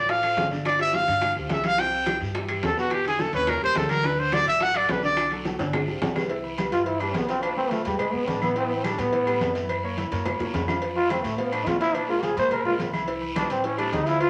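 This danceable, sophisticated Afro-Cuban jazz excerpt opens at a brisk 212 BPM in straight 4/4, with a close-miked trumpet stating the melody up front in a clear jazz tone with light vibrato. Underneath it, a natural-sounding concert grand piano with deep bass plays accompaniment, and a woody upright bass is played pizzicato. The percussion fills in almost at once: round, low-tuned bongos and cowbell, compressed and saturated under soft hands; thick-skinned, damped congas in the background; a scratchy guiro; ringing metal-shell timbales with agogo bells; and distant claves set back in a large room. The trumpet drops out at 5.3 seconds, and a drum fill leads into the second section, where the music settles into C major over chords such as Cmaj7, Bm7b5 and F#7. At 6.7 seconds a growling trombone takes over the solo, bright, gritty and raspy, with vibrato and scooped notes, close-miked at the front of the mix, while a wet studio reverb surrounds the ensemble.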